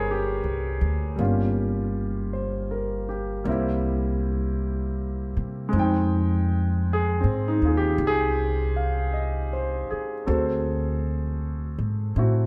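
Romantic and tender, this short swung jazz ballad fragment pairs a clear, naturally ringing concert grand piano, comping up front with deep bass and long sustain through chords such as Cm7, Fm7 and D7#11, with a woody, growly pizzicato upright bass on steel strings, all in light reverb with lossy compression artefacts.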